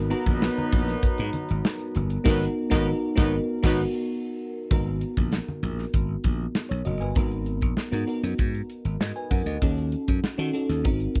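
A straight 4/4 groove at 98 BPM drives this short cut of polished 1980s jazz-funk pop in G# minor, with an urban, nocturnal mood: punchy, up-front acoustic drums with crash, hi-hat, kick and snare sit under a bright, growly slap bass, while a bell-like FM electric piano with lush chorus sparkles through the accompaniment from G#m9 toward a D#m7b5 at 9.6 seconds. A mellow, distant horn section doubled in octaves carries a second line with light vibrato until 3.8 seconds, while a band accent runs from 2.3 to 4.7 seconds. Very quiet, low-tuned congas played with soft hands fill in until 7.0 seconds, all in a dry, close 1970s-style studio sound.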